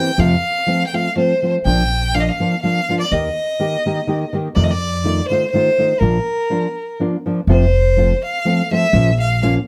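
Mexican folk in a mariachi vein, this proud, festive excerpt moves at 124 BPM in a lightly swung 3/4, set in Bb major with light reverb. A clear, focused bowed violin sings the vibrato-laden melody up front, though with a slightly distant quality, over a thumb-plucked classical nylon-string guitar and a woody, thumpy pizzicato upright bass that enters at 0.2 seconds. The harmony moves through F, Bb, Eb and F7 before a shift at 7.5 seconds brings a new section that closes on a darkening Bbm chord.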